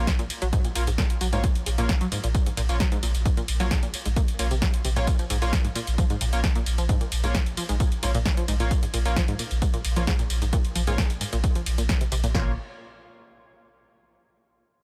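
In a straight 4/4 pulse, an overdriven analog drum machine sits up front with a dry, punchy kick and snare, while a layered, tape-warmed techno kit adds hi-hat, ride cymbal, snare and tambourine, its hats, cymbals and percussion pumping under sidechain. Beneath them a deep, thick triangle-wave sub bass pumps with tube saturation, and a tight, detuned sawtooth sequence carries a mellow riff through chorus and dub echo, topped by edgy, nasal sync-sweep stabs from a wave-folded polysynth with tape echo. This hypnotic, relentless peak-time techno drop, cut from a longer piece with little reverb, runs until 12.3 s, and most parts stop around 12.5 s.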